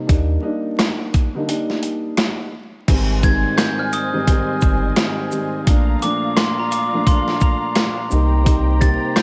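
Nostalgic and confident, this boom-bap hip-hop excerpt moves at 86 BPM with a swung feel, as a dark, boxy concert grand piano and a round, deep dub sub bass play alongside a gritty, thumpy sampler-style drum kit of kick, snare, rim click, hi-hat, shaker and crash, all set in light reverb and vinyl crackle. A break falls between 1.5 and 2.9 seconds, after which a lush, bowed string section enters with vibrato. At 3.2 seconds a ringing, bell-like glockenspiel played with brass mallets adds a melody over chords moving from Ebmaj7 through Abmaj7 and Bbmaj7 to Cm7.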